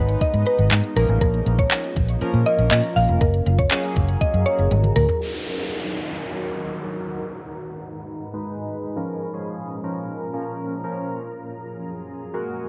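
Bittersweet yet confident, this dance-pop clip in Eb minor moves at 120 BPM, opening on a drop where a round, foam-muted electric bass, a soft-kicked R&B drum kit with metallic hats, handclaps and toms, and a woody, mallet-like FM pluck carrying the tape-echoed melody all pulse over a glossy, warbling polysynth and a shimmering, ethereal pad, until a drum fill at 4.7 seconds hands over at 5.2 seconds to the pad and polysynth, joined by an electronic downlifter, under a long filter sweep, all in a dry, close sound.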